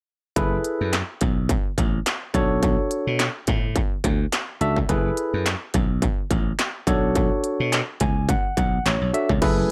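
A barky, lightly overdriven tine electric piano fronts this funky, late-night early-eighties boogie funk excerpt on swung sixteenths, moving between F#m11 and Bm9 and adding a fill from 7.7 s. Growly, punchy slap bass and an industrial electronic drum kit sit beside it, the kit bringing a distorted kick, clanging snare, crisp hi-hat, handclaps and crash. A mellow, detuned sawtooth analog pad with chorus slips in quietly behind at 9.4 s, and the whole mix sits in light digital ambience.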